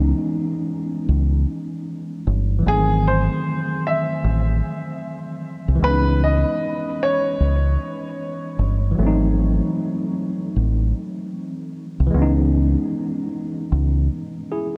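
A round, punchy fingered electric bass sits up front in this nostalgic, reflective hip hop piece in C# minor, moving at a relaxed 76 BPM with a swung 16th-note feel. Alongside it, a worn, slightly out-of-tune tine electric piano, lightly overdriven and filtered through cassette tape, carries the accompaniment over C#m9 and G#7b9b13 chords. A clear, woody upright piano, filtered and washed in tape echo, sings the melody from 2.7 to 9.0 seconds, all set in a dreamy, huge ambient reverb with a cassette-tape haze.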